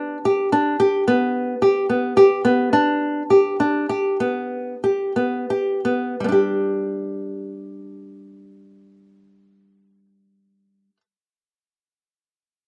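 Shimmering and restless, this short contemporary instrumental excerpt in an uneven 11/8 features a single small, fingerpicked nylon-string guitar placed up front, its warm acoustic arpeggios ringing over a G chord and slowing from 1.3 to 6.2 seconds before settling onto a bare G5 chord for the closing passage, all wrapped in a dark production with a moderate studio reverb.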